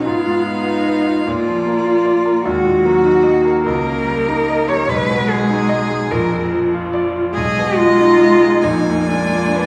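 From the first moment all four players of a piano quartet sound together in this passage from a melancholic, elegiac slow romantic movement in Eb minor, a freely rubato 6/8 at 49 BPM, where a warm, soft-edged cello sits up front with an expressive second line full of portamento beneath a smooth, lightly vibrato violin melody, a rich viola adds sliding, expressive accompaniment, and a bright concert grand piano with brilliant tone and deep bass stands forward, the whole quartet carried in wet concert hall reverb.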